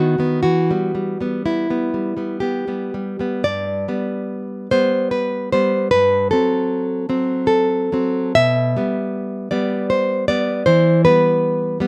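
In a rubato 3/4 that drifts between 54 and 80 BPM, this passionate, intimate fragment of a romantic classical guitar piece features a solo nylon-string guitar, fingerpicked with fresh strings and a full-bodied, deep tone, placed up front in a dry outdoor recording, moving from E minor into G major at 3.5 s through Am13/G and G/B before settling back on Em at 10.7 s.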